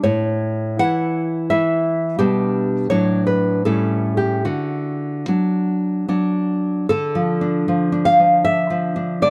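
Tender and warm, this short excerpt of a romantic piece for solo nylon-string guitar unfolds in a rubato 3/4, its fingerpicked classical lines sitting up front in a dark production with light reverb, moving through chords from A to D before turning to D minor at 6.9 seconds.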